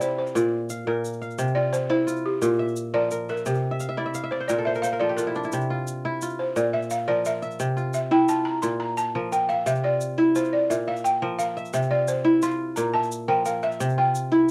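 Set in a rolling 12/8 with a straight feel, this excerpt of West African string and xylophone music moves in a flowing, hypnotic cycle that rocks between two chords throughout. A kora carries the arpeggios from start to finish, its fingerpicked lines acoustic, ringing and crisp, sitting up front in the mix, with a brief fill from 3.7 to 5.5 seconds. A balafon played with rubber mallets sings the melody, its woody, buzzing tone dry yet airy and coloured by cassette tape, and from 1.4 seconds it takes a long solo that runs to the end. Underneath, a tube shaker adds a grainy, bright texture at a much lower level, sounding like it sits in a small room. The whole piece has the intimate feel of a home cassette recording in a short, wet booth ambience, and it is cut from a longer performance.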